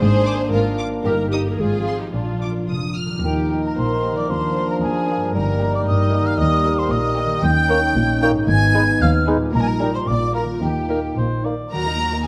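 Magical and playful, this cinematic passage in Eb major at 114 BPM in 2/4 sets a lush bowed violin melody over a rich second violin line, expressive viola accompaniment, mellow French horn chords, a ringing and very quiet fingerpicked harp, and an intimate cello and smooth double bass foundation, with a silvery, distant flute, a cor anglais with light vibrato, a dark clarinet and a background bassoon joining at 3.2 s, all in a moderate concert hall reverb.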